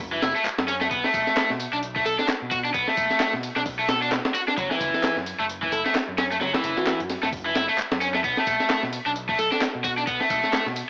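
Energetic and raw, this breakbeat fragment is led by a bright, overdriven cranked stack guitar riff sitting up front, over a growly, punchy overdriven picked electric bass and a gritty, compressed sampler-style breakbeat kit with a thumpy kick and high-tuned snare, while a layered garage kit adds handclaps, ride cymbal and tambourine in the background. A round, mellow FM synth lead with chorus and vibrato flickers in at 2.1 seconds and returns from 5.7 to 9.6 seconds, drifting through tape echo. The whole piece has the feel of a home cassette recording heard through AM radio, bathed in moderate spring reverb, with a swung groove moving through minor-seventh and seventh chords.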